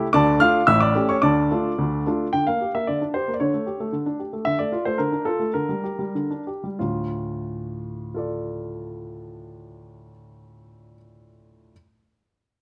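Serious and elegant, this classical-period piano sonatina in D minor moves in 2/4 with a rubato feel, its tempo ranging from 89 to 115 BPM. A clear baby grand piano plays solo throughout the 11.7 seconds, spanning a range from A1 to F6 with a polished, up-front presence. The harmony opens on D minor and A7, then shifts through G minor and A7 over a D in the bass before returning to D minor at 6.8 seconds. The playing slows between 3.9 and 6.8 seconds, easing into that final section. Close, detailed microphones and light reverb keep the sound clear and present, and the passage is cut from a longer piece.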